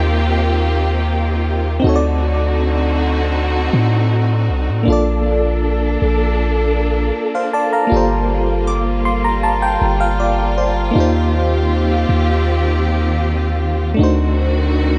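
An echo-heavy mix with light reverb and digital ambience frames this smooth, tender contemporary R&B excerpt at 79 BPM in 4/4, moving through chords such as Eb69, D7b9, Bbmaj7 and Gm11. A deep, sine-toned 808-style bass sits up front beneath a tremolo-laced FM electric piano fed through tape echo, which adds a fill from 8.7 to 11.0 seconds, while a dark, lush bowed string section holds vibrato-rich chords throughout. A very quiet, glassy wavetable pluck with chorus and a filter sweep sparkles briefly at the start and again as that fill begins.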